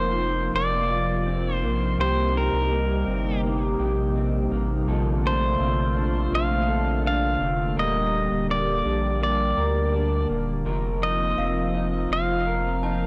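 A clean, up-front pedal steel guitar carries the melody with fingerpicked slide lines and volume swells through tape echo in this dreamy, blissful dream pop excerpt at 83 BPM in Bb major, drifting over a swirling, nasal analog pad with phaser and chorus, dark, slightly broken-up lo-fi arpeggios from an electric guitar through a small old amp, and a deep, thick saturated sub bass, while an inharmonic, warbling FM synth chime rings faintly in the background from 11.4 s, heard through a dry, gritty hardware recording with digital ambience.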